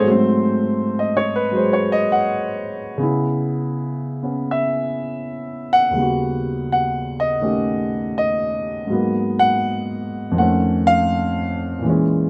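A grand piano carries this solo jazz piece on its own, its tone warm and natural and placed up front in the mix. The mood is cool and swinging, moving at 82 BPM in 4/4 with a firm swing on the eighth notes. The piano ranges from D#2 up to F#5, working through a harmony that opens on G#7b9 and passes through C#m7, D#7alt and G#m9 before landing on F7b13 at 10.4 seconds. A moderate club ambience surrounds the instrument, giving it a short sense of room. The piano plays from the start to 12.3 seconds in a single section, a brief portion taken from a longer performance.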